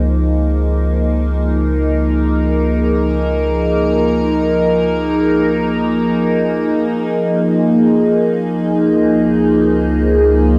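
An evolving wavetable pad sits up front in this peaceful, serene ambient passage in Db major, cut from a longer piece and moving in free time. The pad holds sustained chords between F3 and C5, opening on a Db69 chord; its morphing, triangle-based unison tone has a slow attack and long release, shaded by chorus, phaser and its own built-in reverb. Beneath it, a deep, rumbling drone holds a low Db2 as a bass foundation, its detuned, wave-folded blend of triangle and sawtooth giving a dark, ominous undertone with its own built-in reverb. A fade-out on this synth drone runs through the opening stretch, and the music moves into a new section at 7.2 seconds before the passage ends at 10.6 seconds. The whole piece is bathed in a wet concert-hall reverb and carries the grain of cassette tape.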